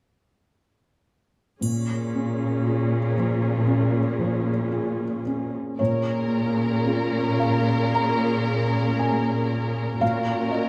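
Sorrowful and longing, this rubato cinematic film-score excerpt opens at 1.6 seconds with an intimate felt-muted upright piano, a smooth viola section and a rich, up-front cello section holding the bass, while a close, dry triangle sounds until 3.6 seconds. At 5.8 seconds a lush, distant violin section takes the melody with expressive vibrato and portamento, its soft attack sitting over the mellow piano as the harmony moves from Bbm7 to Gb/Bb. A moderate scoring-stage reverb surrounds the ensemble.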